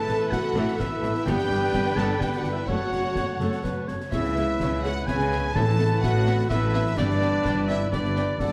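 Bathed in a moderate scoring-stage reverb, this triumphant, adventurous heroic film-score excerpt in 3/4 sets a smooth bowed violin melody over mellow French horn and soft trombone chords, with airy flute, distant oboe and a background violin line adding second lines, a portamento viola accompaniment, ringing thumb-plucked harp arpeggios, mellow trumpet stabs, smooth cello and woody double bass, and snare, bass drum and bright clash cymbals, while a roomy clarinet slips in at 3.2 seconds and hard-mallet timpani strike at 5.6 seconds.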